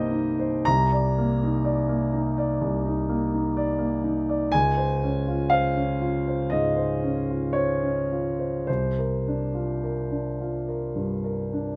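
Mysterious and hazy, this brief impressionist solo piano passage, cut from a longer classical piece, unfolds in rubato 4/4 at roughly 51-63 BPM: a warm concert grand with deep bass, an open tone and long sustain sits up front in close, detailed sound with light reverb, moving from Cm7 through Eb5/C and Dbmaj7 to C9sus4 across its 11.8 seconds.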